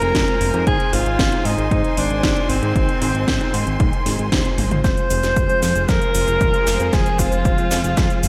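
A breathy alto saxophone carries the melody up front, its solo line colored by light vibrato and a tape echo that gives it a distant, roomy quality, in this bittersweet, nostalgic italo disco excerpt at 115 BPM in F minor. Beneath it, a fat analog bass built from detuned sawtooth and triangle waves with wave-folding and tube saturation holds down the low end with a thick, sustained tone and its own filter sweep. A house drum kit brings a cracking snare, metallic hats, cabasa and toms, overdriven and treated with gated reverb, while a punchy, overdriven electronic kick drives the straight 4/4 pulse. In the background, a vintage electric grand piano with a clangy low register plays stabs through a low-pass filter, alongside a clear, focused studio string section holding bowed, vibrato-tinged chords. The harmony moves from Fm to Ab and back to Fm, and at 4.6 seconds a drum fill leads into the second half, where the drums keep filling and the electric grand piano takes on a filter sweep.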